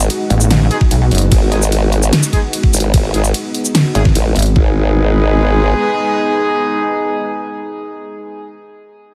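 Heavy wobble dubstep at 148 BPM in a half-time feel, menacing in G# minor, this excerpt opens on a drop where a sawtooth formant-sweep wobble bass with chorus and overdrive sits up front beside an overdriven drum kit with a huge snare, bright hats, ride cymbal and shaker. A detuned, saturated pulsing pluck wobble bass joins at 0.3 seconds, followed at 0.8 seconds by a knocking electronic kick. A lush supersaw pad with a slow attack, sidechain pumping and a low-pass filter holds sustained chords throughout, while a distant, roomy brass ensemble adds tight classical-style stabs with tape echo from 0.7 seconds. The drums and basses drop away by about 5.7 seconds, leaving the pad and brass to carry the second section under light reverb.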